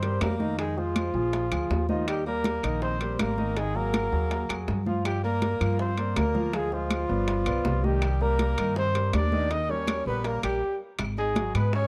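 A dark, vibrato-laden trumpet leads this fiery, driving Afro-Cuban jazz fragment at 162 BPM, scooping into notes with a smooth top while a raspy, growling tenor saxophone carries a second line in the background. Up front, a woody, thumpy gut-string upright bass plays pizzicato beneath an intimate concert grand piano with deep bass, long sustain and audible action noise, as ringing metal-shell timbales, tight high-tuned bongos, bright soft-handed congas and distant, very quiet claves drive the groove. The dry, close 1970s-style studio sound moves through changes like Cm7, Eb and Gm7 to a brief stop at 10.6 seconds.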